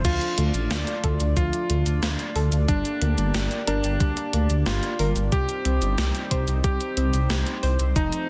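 A dark, rumbling detuned saw bass pumps up front in this nocturnal, cinematic synthwave excerpt, beneath a thumpy, tape-warm electronic kick and a gated 80s digital drum machine of hi-hat, cabasa, crash cymbal and gated-reverb snare, while a vintage electric grand piano carries the melody through digital delay over a shimmering, sidechain-pumped pulse-width pad and soft, round plucked arpeggios sitting in the background, within a dense, heavily limited master touched by light digital ambience.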